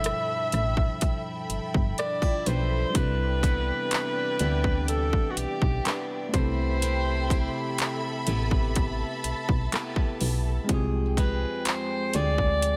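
A tender, romantic contemporary R&B passage in C major at 62 BPM opens with a clear, jazz-styled alto saxophone melody carrying vibrato and delay, set over bright tine electric piano, picked steel-string acoustic guitar arpeggios touched with delay, a dark, woody string section whose sustained chords pump with sidechain, a punchy, round FM bass, and an up-front trap kit of hard-clipped kick, metallic hi-hats, handclaps and rim clicks, within a small room ambience as the harmony moves from G13 to Cmaj9 at 3.0 seconds, then through Am9 to Fmadd9/C.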